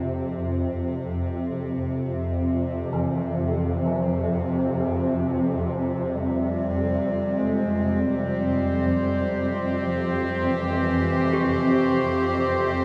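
A swarming, detuned drone sits up front in this dark, cavernous ambient piece, its sine-like tones evolving through a granular haze with slow attack and long release, bathed in its own built-in reverb and analog chorus. Alongside it, a warm studio cello section bowed sul tasto holds soft, pure, floating chords up front, fading in gradually across the whole fragment, which is cut from a longer work. From 2.9 seconds a gamelan-type bronze metallophone, struck with wooden mallets, plays airy arpeggios in the background, its paired tuning producing shimmering beats that scatter through diffuse delay. At 6.2 seconds a bass clarinet enters with a solo melody in a classical style, its somber tone also trailing into delay. In free time the harmony shifts from F5 to C/F, and a huge, dreamy reverb soaks the mix while a trace of small-room ambience lingers underneath.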